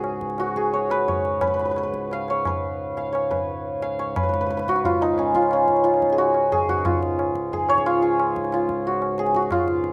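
A mellow, shimmering santur rings up front from the first moment, carrying a radiant, serene Hindustani classical melody over a reedy, breathing pedal harmonium drone low in the mix and a high-tuned, close, dry tabla. The piece, cut from a longer performance, moves into a new section at 4.2 seconds while the pace gradually speeds up throughout. The outdoor recording has little reverb, leaving the hammered santur clear and the full, close-miked harmonium intimate.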